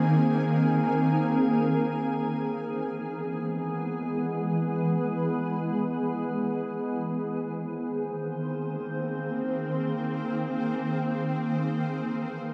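In free time, this serene ambient passage, cut from a longer piece and tuned to A4 = 439 Hz, rests on a shimmering, ethereal pad up front that holds detuned, octave-up sustained chords with chorus through all 12.5 seconds, moving between G#add9 and E. A velvety synth lead with vibrato sounds very quietly for the first 1.0 second, while a glassy texture of drifting overtones sits in the background until 2.2 s. All of it is bathed in a vast, echoing cathedral reverb.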